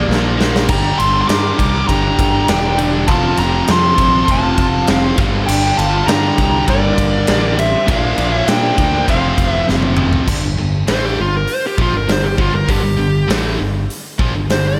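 A big arena sound with a lush hall reverb frames this heavy, aggressive hard rock excerpt in 4/4, led up front by a dark, smooth overdriven lead guitar with slapback echo carrying the melody, and shadowed in the background by an octave-fuzz lead guitar's second line until 9.6 s. Beneath them, a very quiet high-gain guitar, a double-tracked overdriven guitar and a bright, tight distorted guitar drive the riff over a growly overdriven picked bass and a huge acoustic arena kit with a punchy kick and medium-tuned snare. Drum fills mark the opening and the turn at 10.3 s, where the lead breaks into a solo over G minor.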